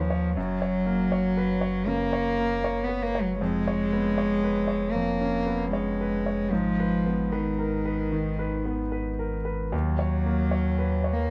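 The rhythm moves freely at 77 BPM in 4/4, with uneven, rubato beats that give this neoclassical piano and strings fragment a reflective, fragile mood. A single bowed cello carries the second line, played sul tasto with a soft attack, its pure, floating tone sitting up front yet sounding distant at the same time. Alongside it, a concert grand piano provides the accompaniment across a broad range. Its tone is clear and intimate with a polished sheen, and its action noise can be heard. A deep, round sine sub bass sustains the low end with mellow warmth, sitting lowest in the mix. The harmony passes from Gb through Db7/F and Abm to Ebm7, and the sound is dry and close, like a 1970s studio recording, over its 11.3 seconds.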